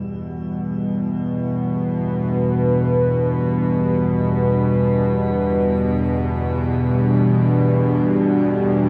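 A bowed-like drone sits up front, its string-like, tense tone built from detuned sawtooth voices with a noise layer and a ring-modulated edge, holding low between E2 and B2 with a slow attack, vibrato and a long release. Beside it, a deep, moody pad sustains chords between G3 and B4, its sub octave and chorus giving it a thick, shadowed body, while a shimmer reverb adds a glassy halo above. This short passage, cut from a longer dark ambient drone piece, drifts in free time on a single E minor chord and never changes harmony. Both parts sound together from 0.0 to 8.9 seconds, creating a desolate, dark mood. The whole mix is soaked in a plate reverb with a 2.6-second decay, giving it a dreamy, cavernous space.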